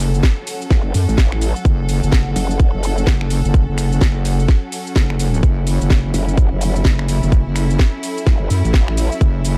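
Bass house with an aggressive, bouncy swing, where a tight, up-front electronic kick drives a saturated wobbling bass on F#m while a growling, formant-filtered bass cuts in at 0.7 and 6.1 seconds, a house kit of cracking snare, metallic hats, snaps and shaker keeps the groove, distant biting strings and an ethereal, phased pad pump behind them, and a very quiet downlifter slips through the opening seconds of this dark, dry cut from a longer track.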